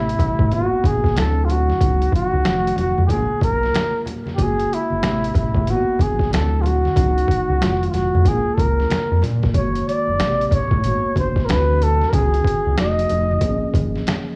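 Worn, warbling cassette tape with small room ambience and light reverb colors this late-night, introspective neo-soul and R&B piece at 93 BPM in 4/4, swung on the sixteenths. A breathy, whispered flugelhorn with vibrato carries the melody up front over a mellow tine electric piano that sounds slightly out of tune, a round, deep analog bass, and a gritty, compressed boom bap sampler-style kit of finger snaps, hi-hat, thumpy kick and snare, overdriven and pitched down. Very quiet, low-tuned congas ring beneath as the chords move through Am9, G#m9, D9, C#9sus4, F7b9 and A#m7 over roughly 14 seconds.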